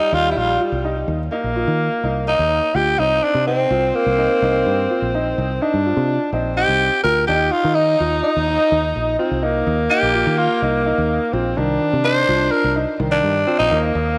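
A growling, raspy tenor saxophone takes the solo up front in this driving, bright progressive instrumental in 9/8, cut from a longer piece, with a breathy alto saxophone carrying a smooth-topped second line beneath it. A dark, mellow grand piano with audible action noise and analog delay plays arpeggios over chords moving from Ebadd9 through Cm7 and Ebsus2 to Cm, while a punchy, foam-muted fingered electric bass enters at 0.1 seconds. The saxophones and piano carry a cassette tape character, and the whole home recording sits in a lush hall reverb.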